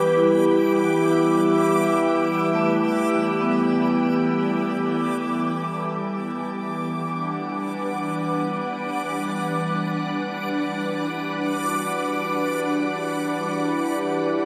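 A bright, up-front organ-like pad holds a sustained Em9 chord with ensemble chorus, while a vibraphone with medium hard mallets rings out airy, metallic arpeggios through diffuse delay, a reversed, dreamy swelling texture hovers high above, a filter sweep moves across the pad from 5.7 s, and a calm organ-like drone slips in beneath at 13.5 s, all in free time and bathed in a wet shimmer reverb that makes this serene ambient excerpt feel vast and spacious.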